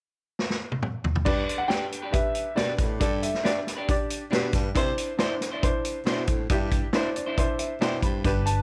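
Light reverb and a studio ambience frame this joyful, danceable slice of uptempo 1960s-style soul, which opens with a drum fill from a vintage kit with dark cymbals and a punchy kick. A woody, slightly detuned upright piano accompaniment comes in at 1.2 seconds, and from 1.3 seconds a growling, raspy baritone saxophone riff and an intimate concert grand piano melody join over G and then Cadd9, followed by twangy, slightly broken-up guitar stabs. The upright piano plays a fill near the end, and a round, foam-muted electric bass enters up front only at 8.2 seconds.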